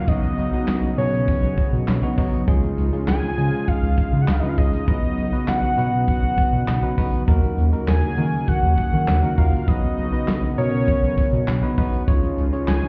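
Synth-pop at 100 BPM in 4/4 with a nocturnal, driving mood, this short cut from a longer piece sounds muffled as if heard through a club wall, moving through Badd9, Dbadd9 and Ebm7 chords. A fat, nasal sawtooth lead with vibrato carries the melody through chorus, analog delay and shimmer reverb over a bell-like tine electric piano, a brassy detuned pad in the background and a round, deep analog bass. A vintage brush drum kit with punchy kick, handclaps and hi-hat drives it, while a very quiet electronic downlifter sounds during the first 2.5 seconds.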